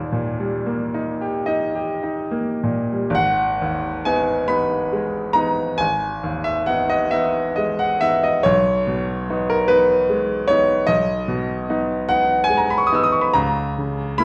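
Worn, warbling old cassette tape with a drifting pitch colours this recording, which sits in a wet recital hall reverb. It is a melancholic, mournful romantic nocturne in a rubato 12/8, cut from a longer piece and played by a bright, brilliant grand piano with a natural, short sustain that sits up front and ranges from G#1 to E6. After an opening on a D# chord, a new section begins at 3.1 seconds on G# minor and settles onto A#m/C# at 13.3 seconds.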